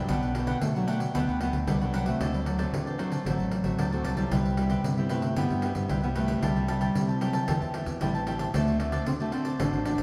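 A straight 4/4 groove at 114 BPM drives this lively, sunny blend of samba and choro, with a jingly, vintage-toned pandeiro played with soft hands sitting up front from 0.1 seconds. The mellow bass clarinet carries the melody in a close-miked jazz style, with light vibrato over a range from D3 to D4. Around it, a crisp, picked cavaquinho rings high, while a warm, fingerpicked nylon-string guitar with a deep classical tone and audible finger squeak sits in the background. A bright, direct fingered electric bass, shaped by an envelope filter, anchors the low end. The harmony moves through Gmaj9/B, D7, Cmaj7 and Am7/C before returning to D7, and a wet large studio reverb gives the sense of a band playing live together in one room, in a short passage cut from a longer piece.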